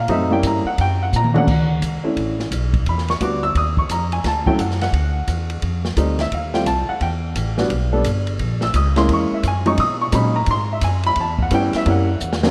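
A swung 4/4 pulse at 173 BPM drives this cool, smoky small-group swing and bop fragment in B minor, cut from a longer piece, where an upfront, woody upright piano with short sustain comps through shifting extended chords over a growly pizzicato upright bass on steel strings, while an open jazz kit with dark cymbals, a boomy kick and a rolled-off top adds drum fills at 1.1 and 12.2 seconds, all bathed in a dreamy plate reverb.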